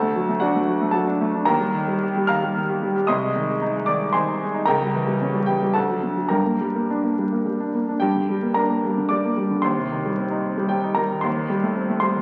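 In a rubato 3/4 at 112 BPM, this stormy, passionate classical virtuoso piano study in G minor features a clear, worn concert grand playing solo up front from 0.0 to 12.2 seconds, its deep bass and short sustain ringing into a wet recital hall reverb beneath the crackle of a very old 78 rpm record, as the harmony moves from D through Eb and a C#dim7 to reach G minor at 6.3 seconds before moving on to Cm/Eb and Am7b5/Eb in this brief cut from a longer piece.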